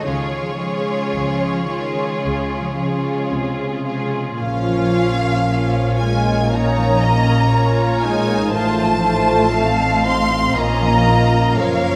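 Tender and warm, this classical excerpt moves at a slow, rubato pace in 4/4, with an up-front violin section carrying a lush, focused melody over a second violin line, while rich violas, a ringing, thumb-plucked concert harp in the background, and bowed cellos and double basses fill out the texture. At 4.4 s the harmony turns to the minor and a French horn section enters with sustained chords in a classical style, lending a warm glow to the strings. Everything sits in a wet concert hall, the violins and cellos smooth and vibrato-rich, the violas lighter in vibrato, the basses soft in attack and expressive.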